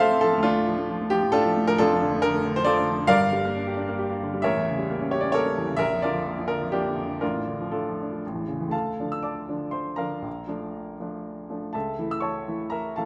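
A bright, up-front grand piano with short sustain carries this stormy, brooding fragment from a longer romantic character piece for solo piano, unfolding in a rubato triple metre across a range from F1 to E6 and shifting into a new section at 8.7 s, all set in a moderate recital-hall reverb.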